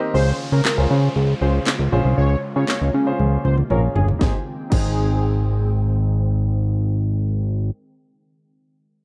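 A fat, saturated analog bass sits up front in this carefree, upbeat dance-pop fragment at 118 BPM in Ab major, its detuned sawtooth and wave-folded tone pumping under sidechain compression from 0.1 s to the end. A warm baby grand piano carries the accompaniment, while a glassy FM pad with ensemble chorus and its own reverb holds ethereal, slow-attack chords in the background, both parts pumping and filtered. A bright, thick unison lead with vibrato and delay plays the melody until 5.7 s. A punchy house drum kit, with cracking snare, handclaps, toms and crash, comes in at 0.7 s, plays a fill before 4.2 s, and stops at 4.9 s. An electronic downlifter and a filter sweep run over the opening Dbmaj7 stretch before the harmony moves to Abmaj7, all in a rough home demo mix with digital ambience.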